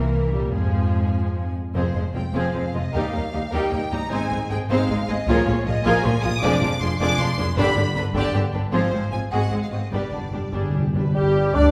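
Classical orchestral music in 6/8 and F minor, stormy and urgent, moving at a rubato pace of roughly 96-106 BPM counted in dotted quarters. A rich, focused violin section carries the melody up to Eb6, while a clear, more distant second violin section adds an intense second line beneath it, and lush violas fill in the accompaniment with a smooth top. Cellos sit in the background on the bass, joined by double basses whose expressive portamento adds weight down to F1. The harmony moves from C7 to Fm and on through Eb, Ab and Bbm7 before arriving on G. Timpani struck with hard mallets enter at 7.6 seconds and play a fill from 9.9 seconds. At 11.1 seconds the woodwinds join in: a bright, present clarinet, a pure, very quiet flute with a soft attack and a warm bassoon in the background, over barely audible French horns, with a mellow cor anglais following a moment later at 11.2 seconds. The whole is heard from further back in a recital hall with a wet, 1.4-second reverb, and the passage is cut from a longer piece.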